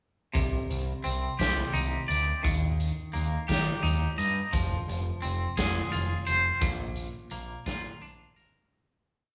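A bright, twangy electric guitar sits up front, its clean, scooped tone carrying picked arpeggios through a tremolo effect across a span from Bb2 to Eb5. This brooding, dark piece of quiet-loud alternative rock moves slowly at 57 BPM in 6/8 with a straight feel, set in C minor over a single verse that runs Cmadd9, Eb, Fm and Bb. Beneath the guitar, a growling picked electric bass, overdriven yet round, drives steady eighth notes. A big acoustic rock kit of kick, snare and hi-hat holds a 6/8 groove up front, with a punchy kick, a medium-tuned snare and a warm, mid-forward sound with a rolled-off top. The band plays live together in a stone room with moderate reverb, and the whole short piece fades out from 6.6 seconds to its close at 8.7 seconds.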